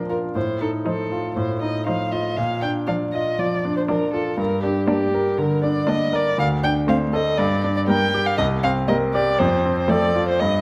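A bright, brilliant grand piano opens this spirited, graceful classical-period piano quartet movement at 0.0 seconds, sitting up front with audible action noise beside a muted viola and a distant, soft-attacked muted cello played con sordino in the background. The muted violin carries the melody from 0.1 seconds, up front with vibrato and portamento, its veiled, dark tone contrasting with the polished, intimate piano. The quick, straight 4/4 passage moves through F7/A, Bb, Gm and C5 to close on F, all set in a wet recital hall reverb, as a brief cut from a longer piece.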